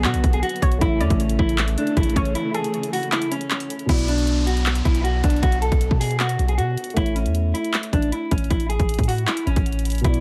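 A half-time trap groove of hard-clipped kick, bright hats, handclaps and crash from an overdriven, up-front drum kit sits over a long, deep 808-style bass in this brooding, eerie hip hop excerpt, where a clean, fingered electric guitar carries the melody up front above a dark, boxy grand piano with audible action noise, lush bowed strings with vibrato and portamento that fall away at 3.9 s as an electronic downlifter enters, and a brief, warbling lo-fi sawtooth pluck with chorus and delay in the background, all set in a dry space under a layer of vinyl crackle.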